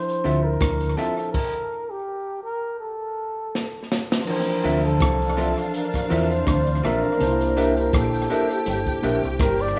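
A breathy, whispered flugelhorn melody with tape echo opens over a barky, lightly overdriven tine electric piano in this bittersweet, smooth lovers rock reggae excerpt, joined by a crunchy, saturated breakbeat kit, a very quiet, twangy envelope-filtered guitar riff, lo-fi stabs from a guitar through a small old amp and a round, dark dub bass, before a stop at 1.3 seconds gives way to a drum fill and a silky string machine with phaser and ensemble chorus adds a second line from 4.9 seconds.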